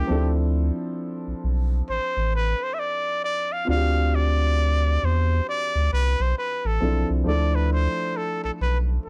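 Smooth and sultry, this short neo-soul R&B passage moves at 67 BPM in D dorian, with a swung sixteenth-note feel and tuning set at A4 = 439 Hz. A nasal, breathy trumpet with a straight mute carries the melody up front, taking an intimate, whispered jazz-style solo with vibrato and a slapback echo until 7.3 seconds. Beneath it, a woody upright piano with long sustain and a deep, round analog bass hold a Dm7 chord that shifts to Dm at 7.3 seconds, all in a dry, close 1970s-style studio sound.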